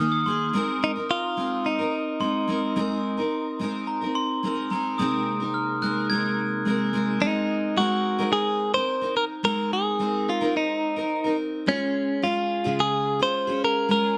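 A bright, twangy clean electric guitar carries the melody from 0.8 seconds, recorded direct and compressed, with a vibrato effect colouring its up-front tone. This is a sunny, easy-going slice of acoustic pop at 108 BPM in a straight 4/4, cut from a longer piece. Beneath it, a full-bodied, double-tracked steel-string dreadnought is picked as accompaniment throughout, moving from Ebsus4 to Abadd9 and settling on Db near the close. A glockenspiel struck with soft plastic mallets adds a ringing, bell-like second line through the opening stretch, set in plate reverb. A mellow, flute-like tonewheel organ holds sustained chords through a fast rotary speaker from 5.0 seconds. Both the glockenspiel and organ fall away at 7.2 seconds, leaving the two guitars in a moderate studio reverb.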